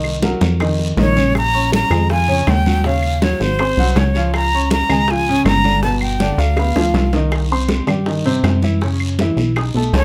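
Lively and sophisticated, this short excerpt of Afro-Cuban jazz sets a breathy, bright flute with tape echo up front over a dark, mellow baby grand piano, a punchy, funky analog bass with a plucky, ring-modulated edge, tight high-tuned bongos, thick-skinned congas and woody claves in the background, and a raspy guiro, with a drum fill from 6.6 to 7.3 seconds as the flute drops out at 7.1 seconds before the close, detailed sound settles on light reverb.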